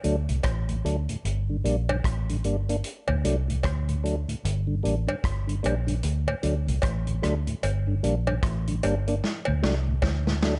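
A dark, foam-muted electric bass sits up front in this laid-back, hypnotic roots reggae excerpt at 75 BPM with a swung 16th feel, anchoring a steady D to G minor sway beneath a mellow, lightly overdriven tonewheel organ with chorus vibrato and a slow rotary speaker, a natural small-room drum kit with a punchy kick, a medium-tuned snare, rim clicks and a rolled-off top, and a close, dry cowbell entering at 0.4 seconds, all in light reverb until a drum fill arrives at 9.2 seconds.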